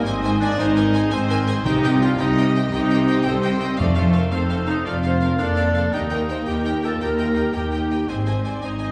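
Cinematic, heroic adventure film score in a straight 12/8 at 112 BPM, this short excerpt cut from a longer piece feels soaring and heroic as the chords move from Ab through C minor, F and Eb before landing back on Ab. A clear, lush symphonic violin section carries the melody with smooth, even vibrato from 0.1 seconds, placed close, while a very quiet, intense studio violin section, a distant, mellow cor anglais and a warm solo clarinet weave second lines around it. A rich viola section fills the accompaniment from the background, and a very quiet, roomy French horn section holds soft-edged sustained chords as a bright trumpet section punctuates with stabs. Underneath, an expressive cello section and a distant double bass section with portamento anchor the bass. Round, soft-mallet timpani appear only between 1.6 and 4.3 seconds, very quietly, and the whole ensemble sits in a wet recital-hall reverb that lends a grand, spacious sheen.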